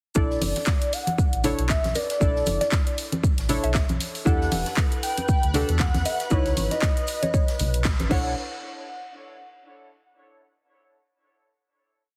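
A heavily compressed, radio-like mix with light reverb frames this hypnotic, late-night deep house piece in B minor at 117 BPM with a 16th-note swing, where a punchy four-on-the-floor kick, a house kit's claps and hats, dry syncopated congas, a very quiet airy big-band breakbeat and a sine sub bass riff with its octave drive dark, warbling chord stabs under a velvety, detuned lead motif, joined by a woody FM mallet pluck at 2.0 seconds and a shimmering string machine holding a high note from 4.3 seconds, before a band accent at 7.9 seconds and a final hit at 8.4 seconds.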